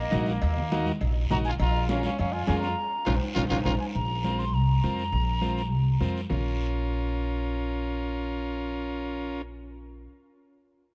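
Dark production with light reverb frames this driving, danceable cumbia excerpt, where a breathy, hollow concert flute carries the melody until 6.0 seconds over a growling trumpet second line, a woody pizzicato upright bass up front, reedy vintage combo organ, raspy guiro, and background congas and ringing cowbell and timbales, with a drum fill and band accent from 2.8 to 3.9 seconds.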